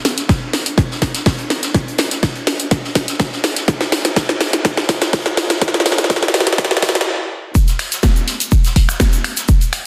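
A straight 4/4 house groove at 124 BPM drives this short cut from a longer piece, its mood expansive and dreamy. A house drum kit of finger snaps, hi-hat and a cracking, tape-warm snare enters at 0.1 seconds and runs throughout, joined at 0.3 seconds by a punchy, layered electronic kick that sits up front. Behind them, a soft-mallet acoustic kit adds hi-hat and a fat snare set back in the mix, its hats pumping against the sidechain and thinned by high-pass filtering. The passage builds with a drum fill that runs until 7.1 seconds, stops briefly, then drops at 7.6 seconds, where a grainy, bright tube shaker enters. A recital-hall reverb with small-room ambience surrounds the drums, and the master is dense and heavily limited with a modern sheen.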